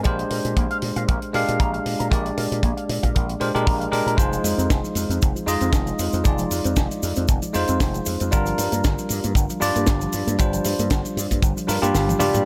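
Light reverb and a small-room ambience give this short nu-disco excerpt a close, slightly softened sound, and the groove feels cosmic and groovy at 116 BPM in 4/4 with a gentle swing on the sixteenths. A bell-like tine electric piano sits up front with clean, direct tone, pumping against the kick and trailing tape echo as it carries the chords from Bb13 through Fm7 to Gm7. Underneath, a punchy, amped slap bass with an envelope filter drives the low end, while a natural, tight acoustic kick and a funk kit with a high-tuned snare, hi-hat, shaker and toms keep things crisp. In the background, a twangy, picked electric guitar with envelope filter, subtle chorus and tape echo plays a bright riff until 4.1 seconds, and at 4.2 seconds a soft, round, dark pluck takes over with chorused arpeggios, 12-bit sampler grit, analog delay and sidechain pumping. The kick falls away near the end, and a drum fill arrives at 12.1 seconds to close the passage.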